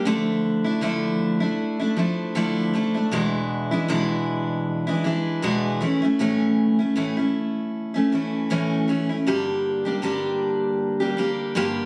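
Reflective and tender, this short pop excerpt features a single picked steel-string acoustic guitar playing solo from start to finish, just under 12 seconds. The guitar sits up front with a warm, full-bodied dreadnought tone, ranging from the low E2 up to G4. A light swing on the sixteenth notes gives the unhurried 4/4 pulse a gentle lilt. The harmony moves from a Dmadd9 chord through E7 and A before arriving on Gm at 9.3 seconds, lending a wistful minor colour. The sound carries the intimate character of a phone recording made in the room, softened by light studio reverb and shaped with compression.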